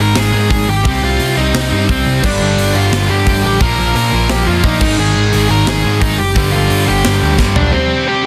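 A dense, heavily limited modern mix with light reverb carries this angry, aggressive punk rock excerpt in C minor at 175 BPM, felt in half time, where a dark, smooth overdriven lead guitar with tape echo sings the melody up front over a growly, punchy overdriven bass, two bright overdriven rhythm guitars riffing in the background, a very quiet double-tracked biting guitar joining at 2.2 seconds, and a tight, polished metal drum kit with bright cymbals that closes on a fill at 7.4 seconds.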